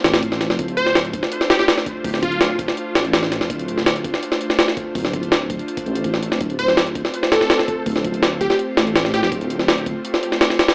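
Raw and dark, this short cut of drum and bass with a jungle edge sits on a single minor seventh chord, heard through a dry, gritty hardware sound with vinyl crackle, an AM radio tint, light reverb and digital ambience. Up front, a compressed, pitched-up sampler-style drum kit drives the groove with a thumpy kick, a high-tuned snare and hi-hat, running the full length. Beneath it, a deep, rumbling detuned saw bass holds low sustained notes with a saturated, beating tone until about 9.9 seconds. In the background, a breathy, mellow pad sustains chords with a slow attack and long release, softened by chorus and roughened by vintage 12-bit sampler grit. A bright, punchy unison lead carries a catchy melody in two phrases, entering at 0.8 seconds and returning at 6.6 seconds, its filter-swept tone coloured by phaser and dub echo.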